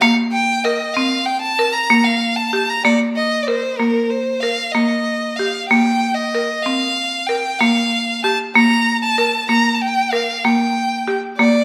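Pensive and restless, this short excerpt of contemporary chamber music moves in an uneven 9/8 at 190 BPM counted in eighths, with a straight feel. A single bowed violin carries the melody from start to finish, its rich, focused tone colored by vibrato and a smooth top as it moves between Bb4 and Bb5. Beneath it, a marimba struck with hard mallets plays arpeggios between Bb3 and Bb4, its hardwood bars sounding woody, buzzing and percussive, with a dry, vintage, band-limited character. Both parts sit up front and play together throughout the full 11.6 seconds. The harmony circles through chords such as Eb69/Bb, Gm11 and Bbsus4, broken by brief chordless passages, before settling on Gm7/Bb at 9.8 seconds. A reverberant recital-hall ambience, like that of a church or concert hall, surrounds the duo.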